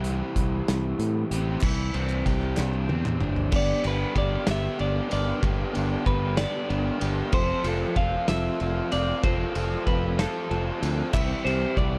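A double-tracked overdriven guitar riff opens this wistful, jangly indie rock excerpt in 6/8 over a growling, overdriven fingered bass and a loose drum kit with a punchy kick and dark cymbals; a very quiet tonewheel organ with slow rotary swirl and key click and crisp background handclaps arrive at 1.6 seconds, and from 3.6 seconds a twangy clean guitar carries the melody through lush chorus and slapback echo, all recorded with little reverb.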